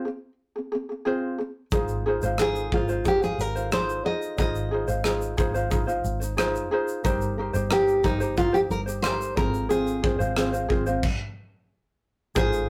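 Acoustic pop with an easy-going, heartfelt mood, taken from a longer piece in a straight 4/4. A full-bodied nylon-string guitar carries the fingerpicked melody up front, its deep classical tone marked by audible finger squeak, while a light, fingerpicked ukulele supplies the accompaniment from the very start. At 1.7 seconds a dark, foam-muted electric bass with a round, amped sound arrives alongside an airy, polished drum kit whose punchy kick, rim click, shaker and crash sit in a small room. The harmony moves from Fm through Ab6 and Cm7/G to Fm/Ab, and the band breaks off in a stop at 11.0 seconds. The whole recording has the rough character of a rehearsal room, with tube saturation and a moderate studio reverb.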